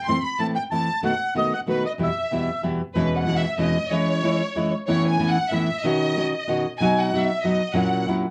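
A reedy, dark bandoneon carries the melody while a rich, vibrato-laden violin section with slapback echo plays a second line, and a full-bodied, fingerpicked nylon-string guitar accompanies in this sultry, melancholic tango fragment in E major, 3/4 at 187 BPM with a rubato feel. The bandoneon drops out at 2.6 seconds, and from 3.0 seconds the bowed violins take a solo over the guitar as the harmony moves through E6, C#m/E and Aadd9 toward F#7/A#. Everything sits in a moderate club reverb, coloured by worn, warbling cassette tape with drifting pitch.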